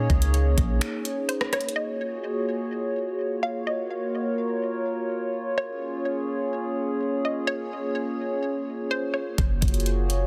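A dry, dense and heavily limited mix opens this ethereal, melancholic cloud-rap excerpt at 126 BPM in a half-time 4/4, where a hollow, flute-like pad carries sustained chords with chorus and sidechain pumping from Bbm7 through Gbmaj9 and Db6, while a bouncy, detuned square pluck plays a chorused melody through digital delay until 9.4 s. A deep, round 808-style bass sits up front with a fast attack and decay, appearing only at the start and returning at 9.4 s. The smooth R&B drum kit pairs a knocking kick and warm hats with finger snaps and rim clicks, a softly clipped snare and a small-room character, dropping out after 1.8 s before coming back alongside the bass near the close.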